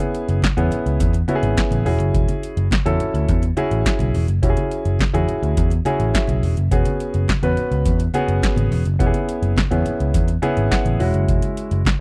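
Danceable and smooth, this short cut from a longer early-eighties boogie funk track rides a straight 4/4 groove. An electro analog drum machine sits up front with a deep kick, punchy snare, metallic hats and handclaps, its tape-warm tone re-recorded in a small room, while low-tuned congas with a bright, thin skin add compressed, saturated color in the background. Underneath, an overdriven picked electric bass supplies a dark, round and amped bottom end. A concert grand piano with deep bass, also up front, carries rootless Amaj7 and Dmaj9#11-over-E voicings that move on to E69, and it breaks into short fills at 5.6 and 10.4 seconds. The dry, close 1970s-style studio sound, with little reverb, keeps the mix intimate and tight.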